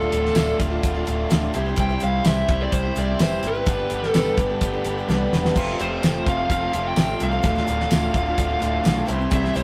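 Classic rock with a driving, swaggering feel at 127 BPM in D dorian, this short cut from a longer piece sets a dark, distorted fuzz lead guitar melody over boxy picked acoustic guitar, two bright overdriven electric guitar riffs, a growly, punchy picked bass, a very quiet grainy egg shaker, faint slow-rotary tonewheel organ chords with key click, and an up-front, dry 70s drum kit with a fat snare and tambourine, which plays a fill at 5.1 seconds before a lo-fi, double-tracked garage guitar riff joins at 5.6 seconds, all in a rough rehearsal-room sound with small room reverb.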